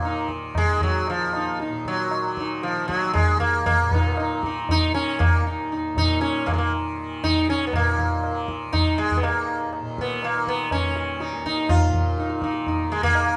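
Lightly reverberant, this solemn, meditative Hindustani classical excerpt in raga darbari sets an up-front, plectrum-plucked sitar melody, buzzing and round with shimmering sympathetic strings, over a softly plucked, warm tanpura drone and close, high-tuned, ringing tabla, gathering speed across its uneven beats.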